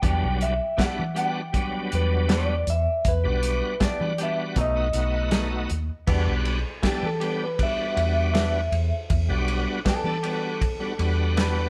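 This mournful, brooding straight-eighth soul blues in E minor moves at 79 BPM, shifting from Em7 to B7 at 4.6 seconds and back to Em7, with a slightly broken-up guitar through a small old amp carrying the tape-echoed melody over a shouting, lightly overdriven tonewheel organ with key click, chorus vibrato and a slow rotary speaker. A round, foam-muted fingered bass and a tight, gritty soul kit with dark cymbals sit up front, while a twangy, direct-recorded clean guitar adds stabs and takes a solo from 6.1 seconds. The band plays live together in one room with moderate studio reverb, and the passage is cut from a longer piece.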